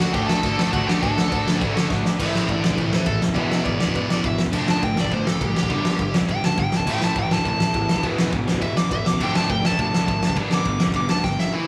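Punk rock with a raw, angry charge, this short cut from a longer piece has a dark, high-gain lead guitar up front that tears into a solo at 2.2 seconds, driven by a loose, acoustic small-room drum kit with a fat snare, punchy kick and dusky cymbals that throws in a fill at 1.9 seconds, while three bright, picked rhythm guitars (one faint, one double-tracked and compressed) and a growly fuzz bass churn their riffs in the background under light live-room reverb.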